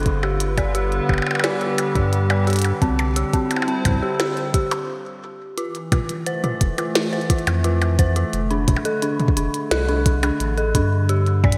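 An eerie, inharmonic FM bell sits up front with chorus and delay, spinning arpeggios over a hollow, flute-like pad and a round, deep sub bass in this glitchy, wistful IDM piece at 87 BPM in F lydian, cut from a longer work. Clicky hats, a tiny snare, toms and percussion blips from an overdriven drum kit with gated reverb and delay are joined by a soft, overdriven electronic kick that enters at 0.1 seconds, and the parts drop into a stop at 4.9 seconds before the second section begins at 5.6 seconds. Chords move from G through Cadd9 and Gsus4 to Fmaj7 and Dm7/F, all wrapped in a lush hall reverb and bright 1980s-style digital production.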